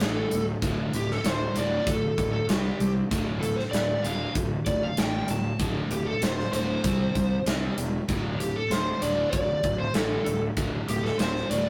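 A picked lead guitar through a small cranked amp leads up front with an overdriven melody, backed by a double-tracked, crunchy rhythm guitar playing a riff in the background over D5 and C5 power chords. A fuzzy, punchy fingered bass and a big acoustic rock kit with a punchy kick, medium-tuned snare and hi-hat drive this heavy, straight 4/4 hard rock passage at 96 BPM. The rough rehearsal-room recording carries saturation and a moderate stone-room reverb, and the clip is cut from a longer piece.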